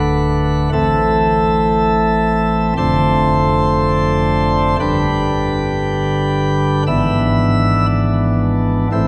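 A solo pipe organ opens on bright, sparkling flute stops with a light baroque voicing and a crisp chiff, spanning D1 to E6 in a reverent, majestic chorale-style passage in steady 4/4. The harmony moves from D through Am, Dm7/F and G before settling on E7/G# at 6.9 seconds. The organ sits in a reverberant church, heard from further back in the room, in this short cut from a longer classical piece.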